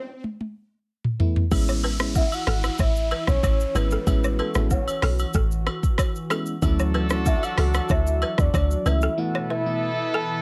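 A straight 4/4 afrobeats groove at 94 BPM in A major carries this romantic, sunny fragment from a longer piece. It opens on an Esus4 break, with an electronic swell and downlifter sounding beneath a drum fill from the afro-pop kit, whose deep kick, dark hats, rim click, shaker and toms sit up front. At 1.5 seconds the groove settles onto Amaj7, as a deep, round log drum bass with a fast, decaying attack joins agogo bells, woodblock, tube shaker and group handclaps. A glassy FM electric piano with a bell-like attack plays the accompaniment, and a hollow, flute-like pad with sidechain pumping holds the sustained chords. A woody, dry balafon plays a riff, while a soft octave-layered synth lead, dressed in tremolo, vibrato and tape echo, carries the melody. From 6.6 seconds the harmony moves to Dmaj7, and a clear, tight horn section with light vibrato adds a vintage second line. The mix stays close and dry, with little reverb, before the rhythm drops away into a closing Esus4 break at 9.2 seconds.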